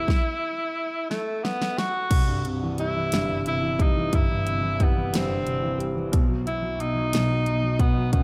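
A breathy, vintage-toned tenor saxophone sings an aching solo melody with vibrato and tape echo over a deep-bassed concert grand piano, whose action noise is audible, in this dramatic six-eight pop ballad at 60 BPM, while a punchy, layered electronic drum kit with a fat snare plays a fill from 1.1 to 2.1 seconds before the harmony settles on C at 2.1 seconds and moves to B at 6.1 seconds, all within a dreamy, reverb-soaked mix.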